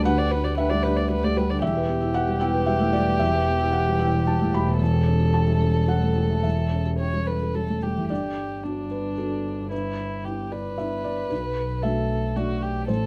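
Lightly reverberant and close, this tender neoclassical fragment sways in a rubato three-four as a dark, sul tasto violin sings the melody over a felt-muted upright piano with audible action noise and a bowed double bass with light vibrato, while a woody marimba in the background adds arpeggios until 8.0 s.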